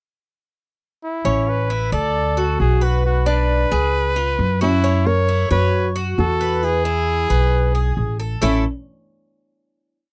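Latin piece in A major at 134 BPM with a sunny feel, where a clear, up-front trumpet with vibrato and scooped notes states a motif-based melody from 1.0 seconds over a metallic Cuban tres picking an arpeggiated guajeo on double strings and a woody, dark pizzicato upright bass playing a tumbao that anticipates the chords, joined at 4.6 seconds by a fingerpicked flamenco guitar adding a harmony line mostly in thirds, all in a dry, close 1970s-style studio sound that ends on a final chord at 8.4 seconds.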